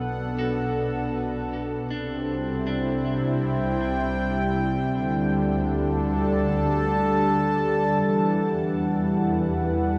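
Ambient music at 79 BPM in 4/4, weightless and serene, cut from a longer piece and moving from Bm7 through C and Dsus4 to Emadd9. A detuned sawtooth analog pad with a soft attack sits up front, sustaining chords through chorus and shimmer reverb. A clean, picked electric guitar traces delayed arpeggios until 3.9 s, and a dark, bowed double bass section with vibrato and portamento holds the low end, these three parts fading in over the first 8.0 s before a barely audible sine-toned, organ-like drone enters at 8.0 s, all within a huge, dreamy reverb.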